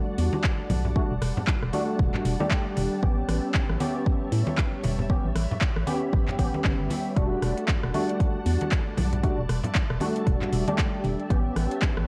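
An overdriven, up-front electronic kick anchors this smooth, deep house excerpt with a 16th-note swing, alongside a dark, hollow FM bass, mellow chorused organ stabs with tape echo, metallic hats, handclaps and rim clicks from a driven drum kit, ringing congas played close, dry and with hard hands, and silky, warbling string-machine chords carrying vintage 12-bit grit, while the harmony shifts between Em11 and A7, sidechain pumping breathes through the strings, stabs and bass, and light reverb sits over a cassette-tape sound.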